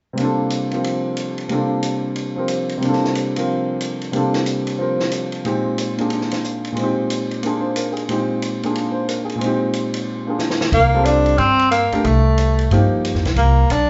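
A clear baby grand piano opens this intense, searching modal jazz passage in C minor at 0.1 seconds, comping up front over suspended C13sus4 and Bb13sus4 harmonies at a brisk 182 BPM in swung 4/4. A compact cocktail kit sits well back in the mix, with dark cymbals on ride and hi-hat, a high-tuned snare and a punchy kick. The kit plays a short fill at 10.4 seconds, leading to a new section at 10.7 seconds. There the chord shifts to C7sus4, and a plucked, woody upright bass on steel strings enters with a tenor saxophone solo. The saxophone has a soft attack and vibrato, and it sounds roomy and somewhat distant even while sitting loudest in the mix. The band plays live together in one large studio with a wet reverb and a mellow, rounded top end, and this fragment is cut from a longer piece.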